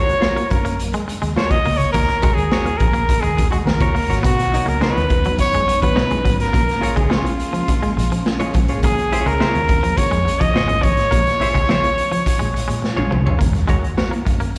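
A straight 4/4 funk groove is driven by a raw garage drum kit, saturated and gritty with a punchy kick, which sits up front and is joined by a dark, round, foam-muted fingered bass. Over this cool, funky bed, a smooth-topped trumpet with light vibrato carries the melody, playing a solo for the first 4.2 seconds with slapback echo and plate reverb. A twangy electric guitar repeats a low riff through slapback echo, while a clean, compressed semi-hollow guitar adds hollow-body accompaniment higher up. At 4.2 seconds a shimmering vintage string machine enters in the background with soft-attack sustained chords, as the harmony moves from Ebm7 to Bmaj9 and then Bbm7. A drum fill at 12.8 seconds leads back to Ebm7, and the whole excerpt is heard as a live gig through the venue's PA, with recital-hall reverb and lossy compression artefacts.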